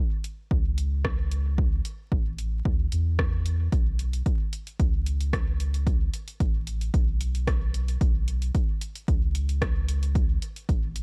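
A straight 4/4 pulse at 112 BPM drives this dub techno passage, which is cut from a longer piece and tuned to A4 = 441 Hz. An analog drum machine with a tape-warm character opens at 0.2 s with hi-hat and rim click, sitting low in the mix. At 0.5 s an electronic kick arrives, layered and overdriven, with a punchy, up-front thump. A soft sub bass enters at the same moment, round and mellow, built from triangle and square waves with a fast attack and long sustain, moving between A1 and E2 and pumping under sidechain compression. The sound is dry, with little reverb and a bed of vinyl crackle, yet the mood feels cavernous and meditative.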